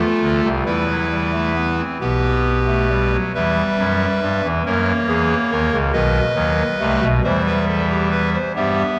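A dark, reverberant church acoustic surrounds this short excerpt of a stately yet lively baroque-style four-part fugue in a straight 6/8, played by a solo pipe organ on a hollow clarinet reed stop with chiff and baroque voicing, sitting up front as it ranges from B1 to E5 and moves from its opening section into a second at 3.4 seconds through minor-key harmony touching F-sharp seventh and B major.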